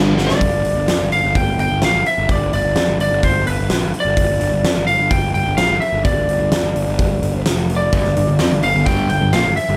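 Sunny and driving, this classic rock excerpt moves at 128 BPM in a straight 4/4, rooted in G mixolydian. A drum fill at 0.2 seconds kicks off a huge arena kit with a fat snare, punchy kick and hi-hat sitting up front in a big, natural room, while a fuzzy, growly picked bass drives underneath from the start. Two overdriven semi-hollow guitars strike a brief riff at the opening, then drop out until 7.9 seconds, when they return in the background with their hollow-body tone. Carrying the melody throughout is a lightly driven lead guitar, compressed and slightly broken-up, placed up front in a high register. The harmony rests on a G5 power chord, shifting briefly to Dm/F at 7.5 seconds before landing back on G5, all within a small room ambience.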